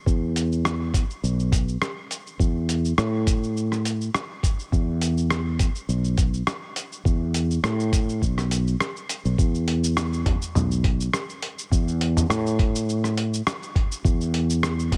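From 0.1 seconds, a thumpy, up-front electronic kick, a gritty, tape-toned soul sampler-style kit of hi-hat, rim click, shaker and toms, and a round, punchy fretless electric bass with sidechain pumping set a mystical, meditative organic downtempo groove at 103 BPM in 4/4 with a light 16th-note swing, all heard dry and close, with a short break at 8.8 seconds before a new section begins at 9.4 seconds in this cut from a longer piece.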